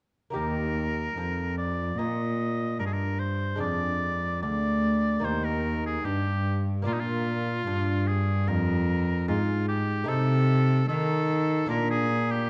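Bowed gut-string cello and a delicate fingerpicked lute with doubled courses open this dance-like, flowing baroque-style sonata movement in E-flat major at 74 BPM, joined at 0.4 s by a bright solo oboe with light vibrato singing up front over the continuo of rich, reedy cello and lute in a dark recital-hall ambience with a 1.3-second reverb tail.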